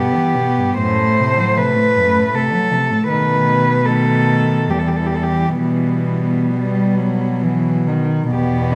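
In a rubato triple metre, this yearning, elegiac classical passage for cello ensemble places a dark, up-front melody cello with vibrato and an airy bow over a softly bowed second line set in the background and a warm sul tasto accompaniment, joined at 0.8 s by a pure, floating bass cello, the three upper players intimate and close, all four sitting in a moderate scoring-stage reverb.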